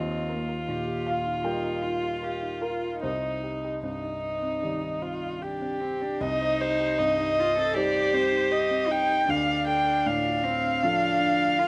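A rubato 4/4 pulse near 78 BPM carries this melancholic, reflective neoclassical piano and strings fragment in C dorian, where an up-front violin sings the melody with a dark, woody sul tasto tone and vibrato, a distant cello floats beneath on a pure, soft-attack second line, a natural-sounding baby grand piano gives warm accompaniment, a round, tine-like thumb-piano-like synth pluck with chorus traces gentle arpeggios in the background, and a very quiet viola joins at 6.2 s, all set in light reverb and small room ambience with a rough home demo mix.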